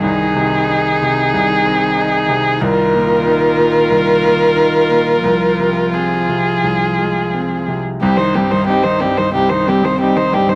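A muted violin carries the melody up front, its veiled, con sordino tone shaded with vibrato as it moves between G4 and C5. This short neoclassical passage for piano and strings sits in C minor at 85-94 BPM in 4/4, with a rubato feel that gives it a fragile, longing mood. A clear, present grand piano provides accompaniment across a broad span from C2 to Eb4, joined by a muted viola whose bowed line has a soft attack and a dark, hushed colour. Further back, a single muted cello traces a second line with light vibrato, adding a shadowy depth beneath the others. The harmony rests over a C bass through Ab/C, Bbsus4/C and Fm/C before arriving on C minor at 8.0 seconds, where a new section begins. Close, detailed microphones and light reverb keep the strings intimate and the whole passage, cut from a longer piece, feels near and personal.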